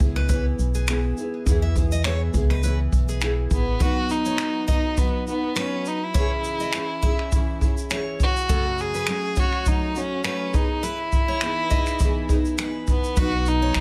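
Fingerpicked, double-tracked nylon-string guitar, a hollow, percussive organ-like FM bass and an up-front brushed jazz kit with finger snaps, shaker and a boomy kick open this easy-going, sunny acoustic pop excerpt with a light swing, soon joined by soft, full-bodied steel-string arpeggios with delay, before a smooth bowed violin with vibrato and delay takes the melody at 3.5 seconds and the bass drops out at 3.8 seconds, returning at 13.2 seconds, all in a light reverb.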